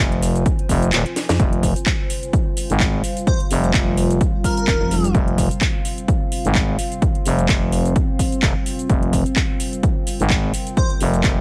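Aggressive and swaggering, this bass house excerpt in F minor rides a 128 BPM swung groove, led by a thick, growling FM bass with tube saturation and sidechain pumping, plus a punchy, overdriven electronic kick up front. A house drum kit of cracking snare, metallic hi-hat, handclaps and shaker adds overdriven grit in a large-room sound, and the kick drops out at 0.9 seconds ahead of a drum fill at 1.2 seconds, just after which a heavy, detuned pluck wobble bass pulses in short bursts. Behind them, a very quiet sweeping resonant sawtooth pad holds sustained chords and a nostalgic, lo-fi, warbling tape-like pad sits in the background, while an airy, dreamy lead with chorus, delay and vibrato floats in from 3.3 seconds.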